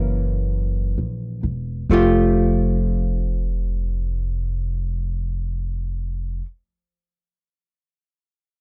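A tender, late-night jazz ballad excerpt in F major at a slow 43 BPM, swung in 4/4, with a slowing down through the first 1.9 seconds as a Gb7 chord gives way to Fadd9. A dark, clean archtop guitar, picked and hollow-bodied, sits up front in accompaniment beside a woody, thumpy pizzicato upright bass on steel strings, both playing from the start until about 6.5 seconds. The dry, close sound of a small 1970s-style studio room keeps the pair intimate.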